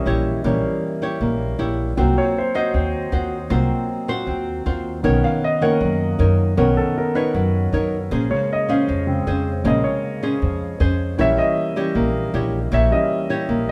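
A concert grand piano takes the solo across this 13.7-second cut from a longer bossa nova, its natural tone carrying a deep low end, while a small-sounding, fingerpicked nylon-string guitar and a woody, thumpy pizzicato upright bass accompany it up front. The mood is wistful and smooth at 156 BPM in a straight 4/4, set in Bb minor and moving through Bbdim7, Ebm13/C, Bmaj9, Bbm9 and Eb7b9/Bb. The trio sounds like a band playing live in one room, its warm parts wrapped in a moderate large-studio reverb.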